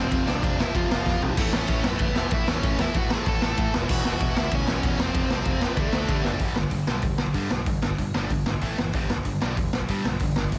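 Rowdy and upbeat, this short punk rock clip is driven by a raw, gritty garage drum kit sitting up front with a boomy kick and rolled-off top, marking fills at 1.1 and 6.3 seconds. Behind it, a bright, sludgy distorted guitar and a very quiet, crunchy overdriven guitar play riffs over a growling picked electric bass, while a dark, smooth lead guitar with overdrive and digital delay carries the melody until 6.2 seconds. The dry, dense master moves through power chords such as F5 and E5 before shifting toward G in the closing section.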